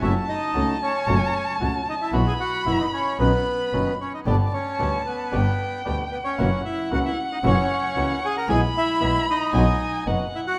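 A rubato 4/4 pulse around 114 BPM carries this playful, elegant tango fragment, cut from a longer piece and moving from F#m through G and F#7 to a close on B. Up front, a reedy, boxy bandoneon sings the melody over a biting, earthy bowed double bass with light vibrato. An expressive bowed violin adds a smooth-topped second line with vibrato and portamento, a thumb-plucked flamenco guitar accompanies with audible finger squeak, and a dark second bandoneon punctuates with stabs in the background, all set in a moderate recital-hall reverb.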